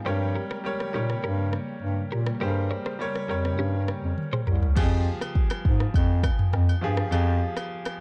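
A small, dark room gives this smooth, mellow afrobeats excerpt at 102 BPM in 4/4 a close, intimate feel. An up-front bass clarinet carries the low line with a soft attack and a smooth top, while a clear baby grand piano plays accompaniment throughout, its natural tone carrying audible action noise. Behind them, a bright, twangy twelve-string electric guitar picks a compressed riff through tremolo and delay, and an ethereal, airy pad holds detuned chords treated with ensemble chorus, built-in reverb and sidechain pumping until about 4.7 seconds. The produced afro-pop drum kit sits forward with a deep kick, rim clicks, crash and toms, roughened by vintage 12-bit sampler grit, and a drum fill leads into a new section at 4.8 seconds. There the harmony moves from G diminished to F minor add nine, the hi-hats drop out, and close, dry agogo bells and woodblock enter with egg shaker and group handclaps.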